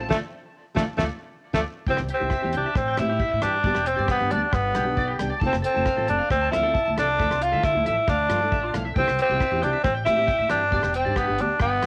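Joyful and sunny, this highlife guitar band piece moves at 135 BPM in C major, cut from a longer performance and captured as a home recording on cassette with light studio reverb. A raspy, growling tenor saxophone with vibrato carries the melody up front from 0.1 seconds, over a dark, fingerpicked steel-string acoustic guitar, lush chorused arpeggios from a twangy electric guitar at the edge of break-up, and a woody, growly pizzicato upright bass. A damped 70s drum kit with a fat snare and tight kick plays hi-hat and rim click, and the band hits an accent through the opening 1.9 seconds before the chords cycle through C, G, F and Dmadd9.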